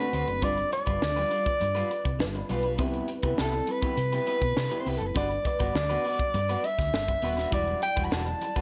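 Polished 1980s jazz-funk pop at 101 BPM in G major, upbeat and urban, cut from a longer piece, with a mellow, roomy soprano saxophone carrying the melody up front with light vibrato, scooped notes and slapback echo over a dreamy FM electric piano with a soft pad layer swirling in phaser and chorus in the background, a slightly broken-up picked electric guitar riff bathed in lush chorus, a round, dark hollow-body fingered bass, and a crisp fusion kit with a high-tuned snare and tight kick, moving through G7, Cmaj7, Gmaj7 and Em9 in a small, lightly reverberant room.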